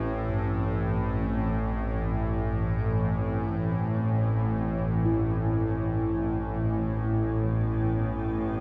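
A tense, string-like drone sits up front from the opening, its wave-folded tone wavering with vibrato, while a bright, granular pad spreads cloudy sustained chords on a single Amadd9 harmony above it. From 0.3 seconds a quartz singing bowl struck with a felt mallet rings out mellow arpeggios with slow beating, trailed by tape echo. This ominous, dark ambient drone fragment, cut from a longer piece, floats in free time inside a drenched cathedral reverb with a 5.9-second decay.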